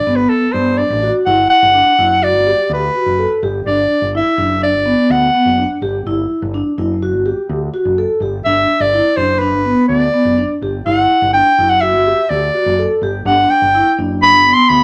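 A warm soprano saxophone opens this short excerpt of bright, intricate progressive instrumental music, singing the melody up front with light vibrato and a classical poise, in 5/4 at 125 BPM in G major. From 0.1 seconds a soft-mallet vibraphone rings out mellow, airy arpeggios with fast motor vibrato, while a growling fingered electric bass, round and overdriven, holds the low end beneath. Light reverb adds a little space as the harmony moves from Bm7/G to Gmaj7(no3) at 1.3 seconds and settles there until the cut at 14.8 seconds.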